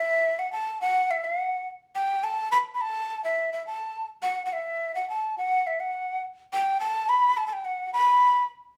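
Andean folk in a melancholic, wistful mood at 105 BPM in a straight 2/4, tuned to A4 = 438 Hz, this short fragment of a longer piece features a large wooden quena playing solo from 0.0 to 8.5 seconds between E5 and B5, its breathy, mellow end-blown tone carrying vibrato, a crisp chiffy attack, rolled-off highs and an unsteady quality, placed up front yet bathed in wet studio reverb that lends a sense of hearing it from further back in the room.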